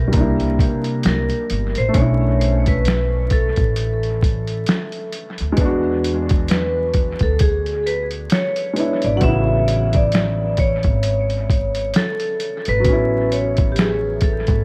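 A swung 16th-note groove at 66 BPM in 4/4 sets an unhurried lo-fi hip hop pace, with a sampler-style drum kit entering at 0.1 s, its thumpy kick, medium-tuned snare and hi-hat pitched down, muffled and overdriven, sitting up front as if re-recorded in a small room. Beneath it, a woody upright bass with steel strings is plucked close and forward in the mix, anchoring the A major harmony as it moves from C9 through Bm11 and E7 to A6. A felt-muted upright piano supplies soft, intimate chords coloured by cassette tape and a low-pass filter, trailing dub echoes. On top, a vibraphone struck with hard mallets carries the melody with a bright, metallic ring and slow motor vibrato, its close-miked tone also filtered and sent into dub echo. The whole fragment runs to 14.6 s inside an echo-heavy studio reverb dusted with vinyl crackle, leaving a mellow, nostalgic haze.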